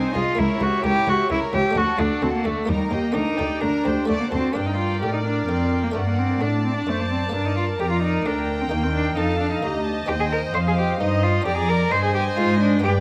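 In a straight, driving triple metre, this dramatic baroque-style concerto fragment puts a nasal, up-front solo cello on the melody over a reedy chamber violin section carrying a high line, a rich, smooth-topped second violin section, a distant, dark viola section, a muted, lute-like buff-stop harpsichord in the background and a dark cello section on the bass from 0.2 seconds, all in gut-string period style inside a moderate scoring-stage reverb touched with vinyl crackle.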